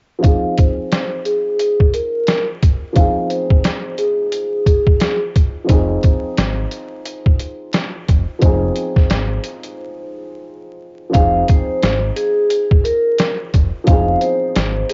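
Up-front, compressed, pitched-down sampler drums with a thumpy kick drive this tough, reflective boom-bap hip-hop excerpt, where a woody, boxy upright piano holds a dark Fm7 accompaniment, a ringing, metallic soft-mallet vibraphone with slow motor vibrato sings the melody, a round, punchy fingered electric bass joins at 5.7 seconds, and a filter sweep runs through the opening section and into a break at 9.8 seconds before the vibraphone returns at 11.1 seconds, all wrapped in a small room, cassette-dulled highs and vinyl crackle.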